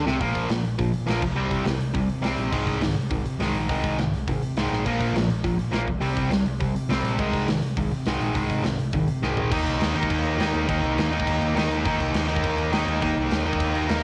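Punk rock fragment at a furious 206 BPM in straight 4/4, angry and aggressive, with a cassette home-recording character and light reverb. An up-front, double-tracked distorted electric guitar hammers a bright overdriven riff cycling through Bb5, C5 and Ab, while an amped, growly picked electric bass pushes underneath. A big-room acoustic rock kit, with a punchy kick, medium-tuned snare and rolled-off cassette-tape top, throws in fills at 4.7 and 9.2 seconds before the music shifts to Eb5 at 9.5 seconds.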